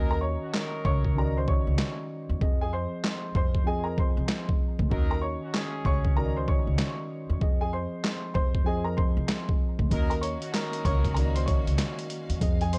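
A thumpy, pitched-down boom bap sampler kit of kick, high-tuned snare, hi-hat and handclaps sits up front from 0.5 s in this gritty, tough 96 BPM hip-hop piece in Eb dorian with a swung 16th feel, over a woody pizzicato upright bass, a mellow tine electric piano with cassette tape colour, a clear, slightly detuned upright piano melody with delay, soft, distant trumpet stabs with delay, and a lush bowed string section entering in the background at 9.9 s, set in a small room with a dark, warm production.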